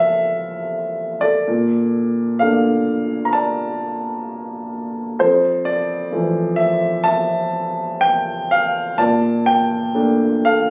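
Lyrical classical solo piano in F major, calm and tender, this short excerpt drifts in a loose rubato around 59-66 BPM in 4/4 as a warm, natural-sounding baby grand, placed up front and ranging from F2 to Bb5, moves gently between Fmaj7 and Bbmaj7 chords in a light studio reverb, captured on a phone in the room and lightly compressed.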